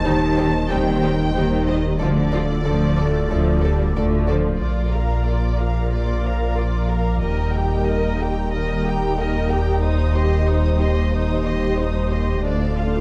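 Moving in a straight 4/4 at 92 BPM, this brooding, relentless stretch of hybrid orchestral and electronic film score is cut from a longer piece and rests on a heavy low end. A deep, full sub bass with octave and a lush double bass section anchor the harmony, joined by a cello section sitting in the background and a distant, roomy tuba that drops out at 4.5 seconds. Above them, a swirling, detuned analog pad holds sustained chords through phaser and chorus, while a viola section adds expressive accompaniment with vibrato and portamento. A smooth, distant symphonic violin section carries the melody up to Eb6, set against a closer chamber violin section tracing a second line, and a mellow trombone section briefly adds very quiet sustained chords early on. The harmony shifts from Cm/Eb and Dm to Bb and Eb as a new section opens at 4.6 seconds, and a huge, dark cymbal swell arrives at 12.8 seconds in a dark production with moderate recital hall reverb.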